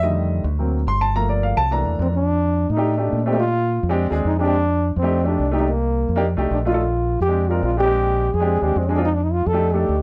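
A woody upright piano takes a brief featured turn over a round, punchy electric bass in this sunny, danceable jazz excerpt, with chords moving through F13, Bb13 and C13. At 2.0 seconds a dark, breathy trombone enters up front, carrying the solo melody with vibrato. Close, detailed miking and light reverb keep the sound intimate and present.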